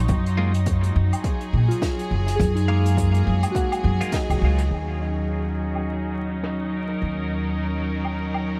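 A light reverb and small room ambience frame this short excerpt of spacious, deep ambient dub, with vinyl crackle running across the whole cut and a swung sixteenth-note feel in 4/4. A clear, bowed string section holds sustained chords throughout, its light vibrato and earthy bite softened by a low-pass filter, moving from Gbmaj9 to Ebm7 at 4.7 seconds, where a filter sweep runs over both the strings and the drums. Up front, a woody, thumpy pizzicato upright bass anchors the low end, while a punchy, layered electronic kick plays until 4.3 seconds beneath an airy jazz brush kit of hi-hat, medium-tuned snare and woodblock, its parts low-pass filtered and sent into dub echo. A soft, pure FM synth bell spins chorused arpeggios with dub echo over the opening 5.4 seconds. Between 0.4 and 4.2 seconds a bright, twangy twelve-string electric guitar adds clean, compressed stabs through phaser and dub echo, and the band lands an accent together at 4.1 seconds.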